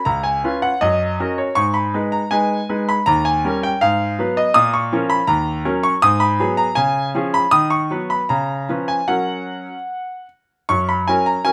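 Cheerful and playful, this brief classical-period piano sonatina fragment, cut from a longer piece, moves at 80 BPM in 2/4 with a rubato feel in F# major, tuned slightly low to A4 = 437 Hz, as a solo grand piano with a brilliant, natural, up-front tone spans C#2 to D#6 in light reverb, its harmony running from C#7 through G#m, D#7, A#m and B/D# before settling on F# at 9.1 seconds.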